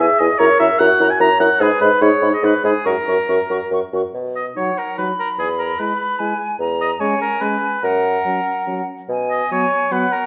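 A lightly vibrato oboe sits up front with the second line, alongside a mellow bassoon on the bass, in this lively, cheerful excerpt of a quick classical-period movement for wind quintet in B major at 146 BPM in 3/4 with a rubato feel, where a pure, soft-attacked silver concert flute carries the melody above a dark clarinet and a warm French horn in accompaniment, all set in a moderate recital hall reverb as the music moves from its opening section into a second one at 4.2 seconds.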